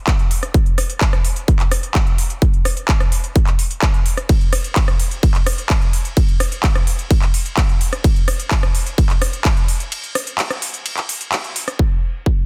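Emotional and euphoric, this EDM drop in straight 4/4 is carried by a punchy, layered electronic kick drum set up front, alongside a big-room dance drum kit of handclaps, crisp hi-hats, ride cymbal and rim clicks, with low-pass filtering on the hats, cymbals and snare. A break arrives at 9.9 seconds, and the kit drops out at 11.8 seconds while the kick carries on to 12.4 seconds. The drums sound dry and tape-warm within a dense, heavily limited modern master, and the passage is cut from a longer piece.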